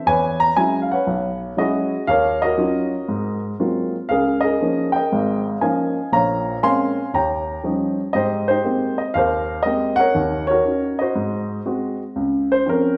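Set in a wet recital hall with a 1.5-second reverb tail, this swinging solo jazz fragment, cut from a longer piece, puts a dark, mellow baby grand piano up front for its 13.0 seconds, its natural, short-sustained tone ranging from Ab1 to C6 and carrying a warm mood through rich extended chords such as Ebm9, Ab13 and Abmaj9 before settling on Dbmaj7 at 12.2 seconds.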